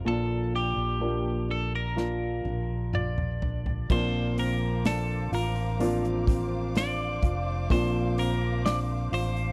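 A bright, twangy twelve-string electric guitar carries the melody in this tender pop ballad excerpt, its clean, compressed picking bathed in spring reverb. Beneath it, a warm, polished grand piano supplies a present accompaniment while a small, dark nylon-string guitar fingerpicks arpeggios in the background, and a round, amped fingered electric bass sits up front. A natural country drum kit enters at 2.0 seconds with a fill across crash cymbal, toms, snare, hi-hat and a punchy kick, its medium-tuned snare sounding airy in the room. At 3.9 seconds a warm string section arrives with bowed, sustained chords, expressive with vibrato and portamento and a smooth top, as the harmony moves from Bb to Bbadd9. The close, dry 1970s-style recording keeps the heartfelt mood intimate.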